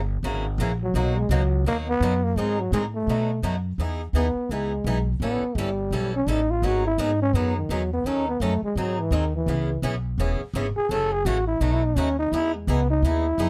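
Swinging eighths at 169 BPM drive this lively excerpt of acoustic string swing in the jazz manouche style, where a woody, thumpy pizzicato upright bass on gut strings and a bright, boxy picked acoustic guitar back a growling, raspy trombone that enters at 0.8 s and launches into a breathy, vibrato-laden solo at 3.8 s as the music settles into E major, with the bass and trombone sitting up front in a dry, close, detailed sound tuned to A4 = 436 Hz.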